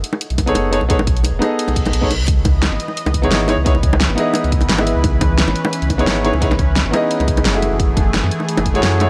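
A smooth, vintage grand piano sits up front through a low-pass filter and dub echo in this lush, melancholic liquid drum and bass fragment at 174 BPM with a light 16th-note swing, tuned a touch below standard pitch, carried by a deep, full sub bass with octave, a punchy layered electronic kick and a produced pop kit of fat snare and warm hats in studio reverb, round low-tuned bongos close and dry, and an electronic reverse cymbal at 1.7 s that ushers in a thick, warbling, detuned sawtooth unison pad with chorus and sidechain pumping at 2.3 s, as the harmony moves from B13 to F#m9.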